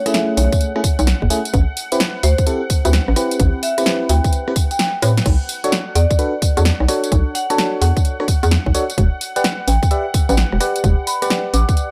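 A moody, skippy two-step UK garage groove opens with a mid-forward marimba melody struck with medium hard mallets and trailed by dub echo. Beneath it sit a smooth, detuned analog pad with chorus and sidechain pumping, and glassy, bell-like FM electric piano stabs that warble through chorus and dub echo. A punchy analog drum machine enters almost at once with crash cymbal, hi-hat, rim click, tambourine and a tape-tinged snare re-recorded in a small room, all swung on the 16ths. Up front, a hollow, bouncy FM bass with a knocking, fast attack arrives within the first second, and a tight, layered electronic kick follows at 0.5 seconds. The kick drops out for a drum fill from 4.8 to 5.3 seconds, while the chords move through F#m9, Am9, Bm9 and Em9 under a light reverb in this section cut from a longer piece.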